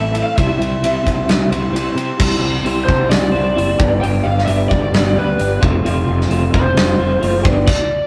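Light reverb and the rough feel of a rehearsal room frame this short cut from a longer quiet-loud alternative rock piece, moving at 132 BPM in a straight 4/4 with a dark, cathartic mood. A lead guitar through a small cranked amp carries the melody with a dusky, overdriven bite, while a clean electric guitar picks warm arpeggios colored by tremolo. Underneath, a fingered electric bass growls with bright fuzz, and a big acoustic drum kit sits up front with a punchy kick, a medium-tuned snare, and glittering crash, ride and hi-hat. After a brief opening section, the music shifts at 2.2 seconds into a new passage as the harmony moves from C through Cadd9, G and F before returning to G. The lead guitar rings on to 8.1 seconds, just past the other parts.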